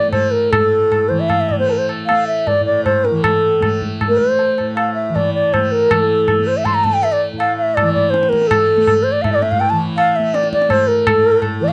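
Introspective and longing, this Hindustani classical passage in raga Bhairavi on A moves in 7/4 at 153-167 BPM and speeds up throughout, with an airy, close-miked bamboo bansuri up front, expressive with vibrato and soft attacks from A4 to C6, over a softly plucked tanpura drone that buzzes and shimmers from A2 to A3, and low-tuned tabla with a short ring, in a dry, close 1970s-style studio sound with small room ambience.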